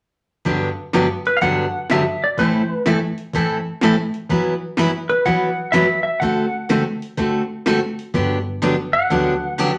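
A swung 4/4 groove at 125 BPM in G major drives this short, down-home western swing fragment, with a punchy analog drum machine of kick, snare and hi-hat sitting in the background from 0.4 s, its sound re-recorded in a small room. Up front, a bright picked dreadnought acoustic guitar carries the chords from Gmaj7 through Am, Esus2 and D7, while a clean, compressed, twangy lap steel sings the slide melody from 1.3 s. A woody, growly pizzicato upright bass joins at 8.1 s as the progression returns to Gmaj7, all set in a wet studio reverb.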